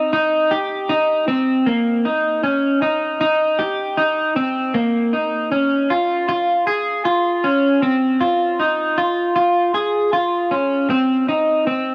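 A lone electric guitar opens this dream pop fragment and carries it alone from 0.0 to 11.9 seconds, cut from a longer piece. Its tone is dark and slightly broken-up, picked and compressed, sitting up front at the edge of break-up. Analog chorus and tape echo thicken the line, which stays within a narrow middle register. A moderate concert hall reverb spreads around the guitar, lending the straight 4/4 playing a dreamy, floating quality. The recording itself is gritty, colored by transformer saturation and the character of cassette tape.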